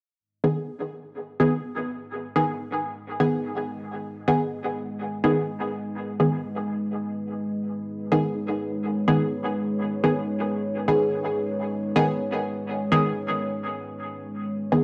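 In a straight 4/4 pulse, this meditative, hypnotic techno excerpt opens at 0.4 s with a muted, detuned sawtooth dub chord stab, its fast filter pluck colored by chorus, phaser, 12-bit sampler grit and dub echo. At 2.2 s a deep, moody ambient pad joins, a slow-attack sawtooth-and-sine sound with a sub octave and long release, sustaining dark chords through chorus and its own reverb. The excerpt rests on a single minor chord, heard through a gritty hardware recording with a dull top end and a moderate echo-chamber ambience.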